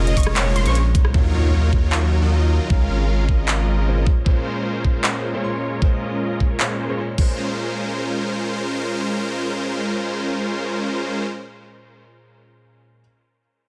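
Future bass in Bb minor at 154 BPM with a half-time feel, this bittersweet, dreamy excerpt opens on a drop where huge, lush detuned supersaw chords with cassette-tape colour, tape echo and a low-pass filter pump against a deep, saturated sine sub bass, while a punchy pluck arpeggio and a velvety chorused synth lead flicker briefly in the background. Overdriven, up-front dubstep drums with crash, handclaps, hi-hat and rim click ride over a knocking layered kick until 7.3 seconds. At 1.1 seconds a very quiet electronic impact lands and a filter sweep on the supersaws begins, over chords moving through Bbm9, Ebm9 and Db6. A brilliant, vintage-toned concert grand piano with tape echo carries on under the supersaws to the end, set in light digital ambience.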